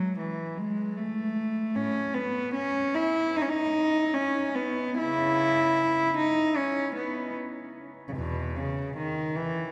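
A rich, reedy cello carries this short baroque-style suite movement alone, heard as one player bowing in a period style with a gut-string tone. The mood is serene yet dance-like, moving at 75 BPM in 4/4 with a rubato feel that lets the phrasing breathe. The cello ranges from E2 to E4 and sits close and up front, so its grain comes through clearly. Around it, a cathedral reverb with a 5.0-second decay blooms through a church or concert hall space, lending the sound a glowing, spacious halo. The passage is cut from a longer piece, lasting 9.7 seconds.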